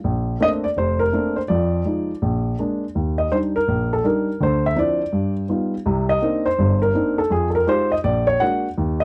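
A solo baby grand piano opens this short jazz fragment, cut from a longer piece, and carries it alone from the first second to the last at 9.0 s. The mood is relaxed and sophisticated, with a swung feel that gives the phrases an easy lilt. The instrument has a dark, mellow voice with a short sustain, and the close, detailed microphones keep it up front and intimate, so the natural noise of its action can be heard beneath the notes. Rich extended harmonies move from an opening Bbmaj9 through a second section that begins at 2.9 s with Ebmaj7, passing Dm9, G7b13 and Cm9 before settling on a tense Bbaug7. A light reverb gives the sound a little air while leaving the piano's close character intact.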